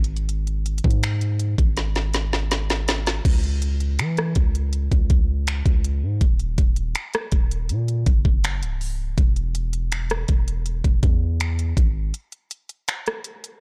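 A dry, blown-out, overdriven recording carries this sensual, late-night contemporary R&B passage from a longer piece at 81 BPM in a straight 4/4, where an up-front electronic trap kit of knocking kick, woody snare with soft clipping, crisp hi-hat, rim clicks, finger snaps and crash cymbal plays a fill from 1.8 seconds and carries on alone after the deep, mellow, up-front sine 808 bass, with its fast attack and long decay, drops out at 12.1 seconds.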